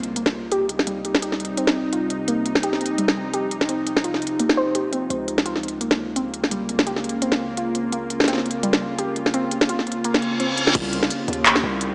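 An impact hit opens this dark, spacious half-time drum and bass cut at 170 BPM in C phrygian, as a bowed-like drone of tense, string-like sustained chords pumps under sidechain compression with its own built-in reverb and vibrato. A deep, sine-toned 808-style bass holds long notes in the background, while an organic electronic drum kit sits up front with a woody snare, crisp hats, handclaps, shaker and crash, all carrying a lightly swung sixteenth feel. From 0.2 s a warbly, dusty pluck spins out lo-fi, detuned arpeggios through chorus, phaser and tape echo, with a filter sweep running across it as the chords move from Cm to Db6. A reverse cymbal rises at 10.2 s, and a tight, layered electronic kick lands at 10.7 s to mark the drop back onto Cm. The whole mix sits in a lush hall reverb with a small-speaker character that adds to its vintage, tape-warm haze.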